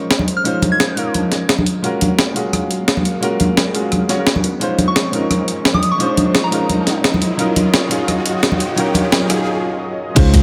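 A moderate plate reverb surrounds this lush, warm liquid drum and bass excerpt at 173 BPM in Db major, where a clear, short-sustained grand piano through low-pass filtering and dub echo and a thick, warbling detuned unison pad with 12-bit grit and sidechain pumping carry Dbmaj9, Gbmaj9 and Ebm9 chords. A gritty, compressed breakbeat sampler kit sits up front with ringing soft-handed congas, while a pure FM synth bell offers brief chorused, delayed phrases and a background riser builds from 3.9 s to 9.5 s during a filter-swept build-up. After a short break, a tight tape-warm kick, a dark crunchy breakbeat kit and a smooth gliding wave-folded bass with vibrato and portamento all land at 10.2 s.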